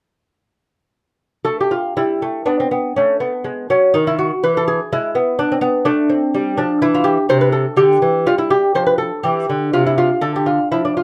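A solo lute enters at 1.4 seconds with a grave, introspective baroque-style dance in 3/4, taken at 123 BPM with a rubato feel and tuned to A4 = 442 Hz. Fingerpicked on nylon double strings, some doubled at the octave, the lute sounds delicate and up front in light reverb, ranging from C3 to C5. It begins in A minor and turns to C major at 7.3 seconds, ending on a D minor chord at 10.2 seconds in this fragment of a longer piece.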